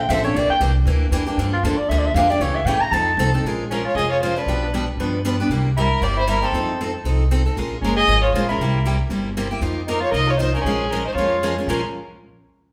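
A swinging 233 BPM jazz manouche pulse drives this fiery acoustic string swing excerpt, where a mellow, distant soprano saxophone with vibrato solos over the first 3.4 seconds, backed by bright, up-front picked steel-string guitar and a woody, thumpy pizzicato upright bass on gut strings, before a rich, focused bowed violin with vibrato takes the melody at 3.7 seconds over chords moving through Bbm7, C7 and F7sus4, all heard as a band playing live in one room bathed in wet studio reverb.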